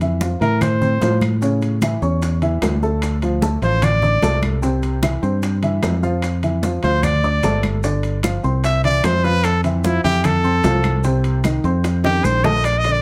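Sophisticated and lively, this Afro-Cuban jazz excerpt moves at 150 BPM in F major, with a warm, direct fingered electric bass up front and a slightly detuned, woody upright piano comping with short sustain. A bright, punchy trumpet solos with light vibrato and scooped notes, darting in briefly at 0.4 seconds and returning at 3.6 seconds to play forcefully through the end, bathed in plate reverb. Behind them sit thin-skinned congas, round low-tuned bongos, ringing metal-shell timbales, woody claves and grainy maracas, with a drum fill at 11.8 seconds.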